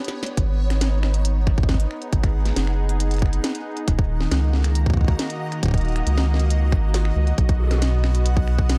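A round, deep analog bass and a tight electronic kick sit up front from 0.4 seconds in this cerebral, intricate IDM excerpt at 137 BPM in G# minor, beneath a warbling, detuned pad with lush chorus and sidechain pumping, a glitchy kit of finger snaps, clicky hats, tiny snare and toms that opens with a brief fill, and a reversed, granular, dreamy texture glimmering in the background, as the chords move from G#m to D#m to B in a dark digital ambience.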